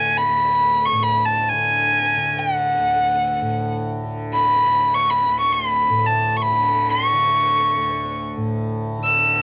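A single violin and a buzzing, shimmering tanpura drone open this devotional, radiant Hindustani classical passage, cut from a longer piece. The violin sits up front and close, carrying the melody high in its range with a rich, airy tone, light vibrato and soft attacks bowed over the fingerboard. The softly plucked tanpura rests far lower in the mix with a cassette-tape color, and the whole has the intimate feel of a home recording with light reverb.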